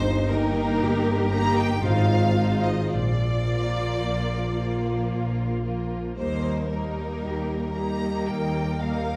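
A dark, warm production places this string orchestra in a recital hall, with wet reverb lending a halo to the sound. It is a slow, tender romantic movement in Eb major and 3/4, moving at roughly 54-60 BPM with a freely breathing rubato. A bright, lush violin section carries the melody with vibrato, while a clear, smooth cello section and a focused double bass section, sitting up front in the mix, form the bass from the opening moment. At 0.3 s a second violin section joins with an expressive line, its portamento slides and vibrato sounding distant, alongside violas that fill in the accompaniment with an even, rich tone. The harmony moves from Eb/G through Fm7/Ab to a long Bb before settling home on Eb at 6.2 s, within this brief 9.2-second passage cut from a longer piece.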